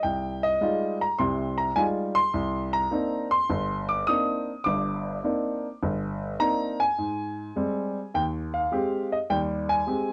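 Moody and smoky, this short fragment of solo jazz drifts along in 4/4 with a lazy swing on the eighth notes. A single warm baby grand piano carries the whole performance, sitting up front with a natural tone and ranging from a deep G1 up to a bright Eb6. The harmony moves from Fm9 to Cm9 at 2.3 seconds, then settles onto Abmaj7 at 7.0 seconds, giving the passage a hazy, late-night color. Light reverb adds a touch of space, while the recording carries the worn character of old cassette tape, with a warbly pitch drift that lends the sound a faded, nostalgic quality. Lasting about 10.1 seconds, it feels lifted from a longer piece.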